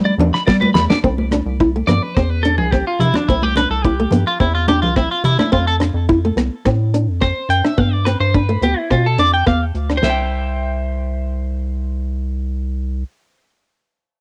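This danceable highlife guitar-band excerpt sounds like a home recording on cassette, lightly touched by reverb, with a warm, homespun glow. A clean, compressed electric guitar sits up front, picking arpeggios through subtle chorus and tape echo before taking a solo from 1.0 to 10.0 seconds over a progression that moves from G to C, F and back through G to C. Beneath it, a rubbery, hollow square-wave bass bounces with a fast, plucky attack, while a small fingerpicked nylon-string guitar adds warm acoustic accompaniment. A damped 70s drum kit keeps a dry, dark groove with a fat snare, tight kick, hi-hat, rim clicks and crash cymbal, joined by ringing, high-tuned congas that stop at 5.5 seconds. The drums and nylon-string guitar fall away before the close, leaving the electric guitar and bass to carry the final bars of this fragment from a longer piece.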